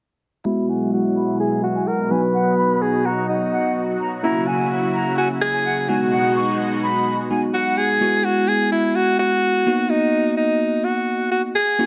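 Carefree and euphoric, this pop excerpt at 127 BPM in B major sets a bright, up-front alto saxophone melody with vibrato over bell-like tine electric piano with lush chorus, a thick, detuned unison pad that holds sustained chords until 8.0 s, and a breathy concert flute that shares the melody until 7.9 s, all in light reverb with a filter sweep across the opening section, moving from Eadd9 through B, F#7 and G#m7 before closing on Bmaj7.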